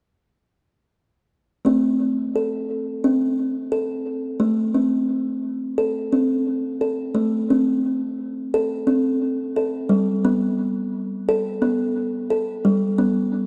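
Over a gently swung sixteenth-note lilt in 4/4, a solo kalimba enters at 1.6 seconds, its woody, hollow-bodied fingertip plucks sounding mellow and up front through a diffuse ambient delay. A new section opens at 4.4 seconds, and the harmony rests on A minor before moving to G at 9.9 seconds. The long, wet church reverb lends this short, meditative world fragment a hypnotic glow.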